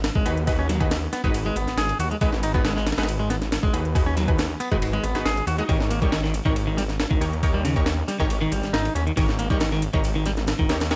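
A compressed, pitched-up breakbeat kit sits up front with a thumpy kick, high-tuned snare and ride, while layered electronic hi-hats with metallic shimmer tick in the background, giving this swaggering, gritty breakbeat cut a straight 138 BPM drive. A thick, menacing detuned saw bass holds the low end beneath a bright, twangy clean electric guitar riff colored by tube saturation and delay. Bold, punchy orchestra-hit-like synth stabs with reverb and delay punctuate the harmony as it moves from G#m7 to D#7/G# at 5.7 seconds, all over a bed of vinyl crackle.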